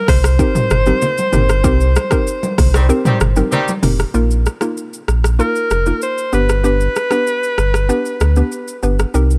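A smooth, vibrato-tinged alto saxophone leads this sultry afrobeats fragment over a full, up-front sub bass and an overdriven electronic house drum kit with metallic hats, while a hollow, detuned square-wave pluck with chorus bounces beneath, bright, damped congas play until 4.0 s, and a tight, vintage horn section doubled in octaves joins briefly from 2.7 s, in a dry mix.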